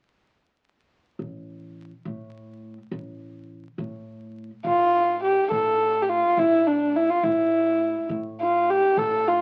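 Persian modal ensemble music in A dastgah homayun, passionate and warm, moving at 70 BPM in a straight 6/8, where a quiet, woody, growly pizzicato upright bass begins alone at 1.2 s before an intimate, up-front kamancheh enters at 4.7 s with light vibrato, soft attack, portamento and an airy bow, all set in light reverb with the crackle of a very old 78 rpm record in this passage cut from a longer piece.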